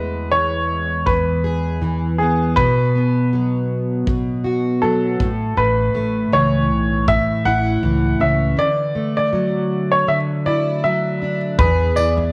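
Light reverb and a small-room ambience frame this heartfelt, carefree acoustic pop excerpt at 80 BPM in E mixolydian, with a gently swung sixteenth-note feel. A clear, intimate upright piano carries the melody up front with its action noise audible, over a full-bodied, double-tracked fingerpicked steel-string acoustic guitar with fresh strings. Brushed kick drum and tambourine with a punchy kick and a rolled-off top enter at 1.1 seconds, and a woody pizzicato upright bass joins at 5.6 seconds as the chords move from E through B5, A and Dadd9 back to E.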